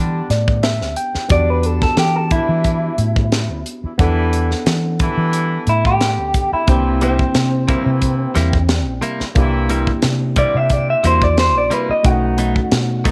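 Straight-eighth soul blues at 89 BPM in 4/4, mournful and smoky, moving through Em7, C7 and B7 in this short clip from a longer piece. A worn, slightly out-of-tune tine electric piano opens with a fill over distant, mellow horn chords with light vibrato and a dark, round, foam-muted fingered bass. The tight funk kit, with its high-tuned snare and punchy kick, joins at 0.3 seconds, and at 1.3 seconds a slightly broken-up, lo-fi guitar through a small old amp takes the melody up front, carrying spring reverb and slapback echo, before a bright, twangy, direct-recorded clean guitar adds compressed stabs from 7.0 seconds in a lightly reverberant studio room.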